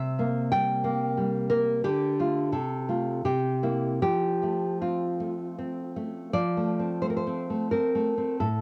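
A nylon-string classical guitar carries this short romantic piece alone, fingerpicked and up front in the sound, with a dark, acoustic tone that suits its passionate, melancholic mood. The music moves in 3/4 with a rubato feel, its tempo drifting between 76 and 92 BPM in F major, tuned slightly low at A4 = 439 Hz. The guitar spans from A2 up to G5, and its harmony travels from C7 through Dm and F/C, returning to C7 before settling on F at 4.0 seconds. A new section begins at 6.3 seconds and runs to the close of this brief fragment, cut from a longer piece at 8.6 seconds. The home cassette recording lends a hint of tape grain, set in a moderate studio reverb that gives the instrument a modest sense of space.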